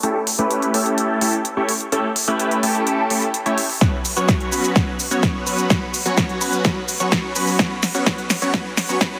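A huge, bright detuned supersaw riff opens this powerful, euphoric festival progressive house build-up at 127 BPM, its phaser, sidechain pumping, digital delay and sweeping low-pass filter riding over crisp hats, shaker and a punchy overdriven snare from the big-room dance kit, before an up-front, overdriven electronic kick and a drum fill arrive at 3.8 s as the A7 harmony shifts to F#sus4, all bathed in a huge ambient reverb and a dense, heavily limited master.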